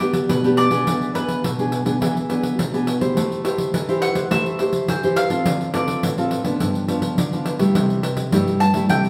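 A mellow, woody mandolin picks the yearning melody on double strings through this nostalgic samba and choro excerpt in E minor at 105 BPM, over a bright, fingerpicked classical nylon-string guitar and a jingly pandeiro that both sit up front, the trio playing live together in a large studio with wet reverb as the chords move from Em7 through E7, Am7, Dm7 and G7 to C6.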